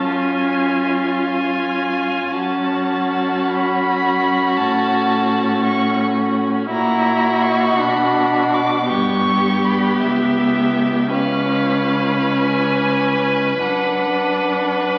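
Heard through the crackle of a very old 78 rpm record, this string quartet sits in a wet scoring-stage reverb that lets each chord hang for about 1.7 seconds. It is a slow, solemn and melancholic romantic movement in 6/8, played with rubato and cut from a longer piece. All four bowed parts are played by single players with a rich tone and vibrato, and all four sound for the full 15 seconds. The first violin carries a smooth, even melody high above the ensemble, while the second violin plays a focused inner line up front. The viola, close and the most prominent part, shares soft attacks, portamento and an expressive manner with the cello, which supplies the bass. At 6.7 s the harmony moves to a new key, passing through a half-diminished chord before settling on B minor with F# in the bass at 13.6 s.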